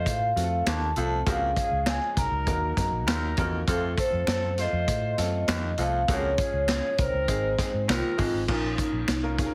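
Driving and passionate, this short cut from a longer uptempo 1960s-style soul piece moves in a straight 4/4 with a heavily compressed, radio-like sound and light reverb. A mellow vibraphone played with soft mallets carries the melody, its metallic ring shimmering with a medium motor vibrato, while a distant, roomy horn section with light vibrato supplies a second line until about 8.3 seconds. Underneath, a vintage foam-muted fingered electric bass gives a round, punchy low end, and a vintage drum kit sits up front with a punchy kick, medium-tuned snare, hi-hat, and dark crash cymbal under a rolled-off top. From 0.4 seconds a bright upright piano adds woody, brilliant accompaniment with long sustain and audible action noise, and from 0.7 seconds a clear baritone saxophone with subtone plays a low riff as finger snaps tick in the background. Near the close the harmony shifts to a new section at 8.5 seconds, landing on a Bb minor chord.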